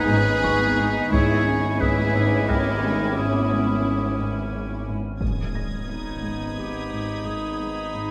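A mysterious, eerie suspense cue opens at once, with a sul tasto violin section carrying a pure, floating melody over a distant, roomy clarinet second line. Underneath, a further violin line joins in while a dark, woody viola section with vibrato sits in the background, and cello and double bass sections hold soft-attack bowed bass notes as a bowed-like drone adds a tense, detuned, sawtooth hum on a low G#. A glassy harmonics texture drifts through sustained chords with chorus, a very quiet felt-muted upright piano adds a mellow, intimate layer with audible action noise, and a hushed cello riff moves in the low register, joined soon after by a high, very quiet violin texture. Heavy-stick taiko drums rumble in the background from 0.4 to 3.1 seconds, and at 5.2 seconds a huge, dark impact lands as the harmony settles from G#madd9 and C#m7/G# onto G# minor. The piece moves at 88 BPM in 3/4 within a moderate concert hall reverb, and the recording is cut from a longer piece.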